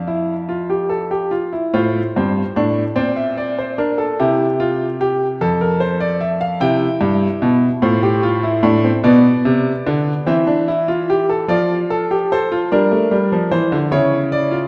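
Contemplative and solemn, this baroque-style three-part fugue in a straight 6/8 is played by a solo grand piano, intimate and up front with its action noise audible, ranging from F2 to G5 and turning toward a minor key at 11.5 seconds, all set in the wet reverb of a recital hall in a short cut from a longer piece.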